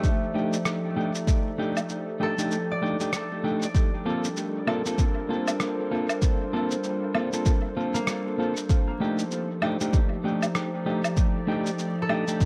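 Ambient dub with a hazy, meditative mood, where a warbling, nostalgic tape-like pad holds chorused chords over ringing fingerpicked concert harp arpeggios and dark, clean stabs of semi-hollow electric guitar, both trailing dub echo, while an up-front overdriven deep electronic kick drops out from 2.5 to 3.7 seconds alongside muffled, pitched-down shaker, rim click and woodblock, all under light reverb and vinyl crackle in this excerpt cut from a longer piece.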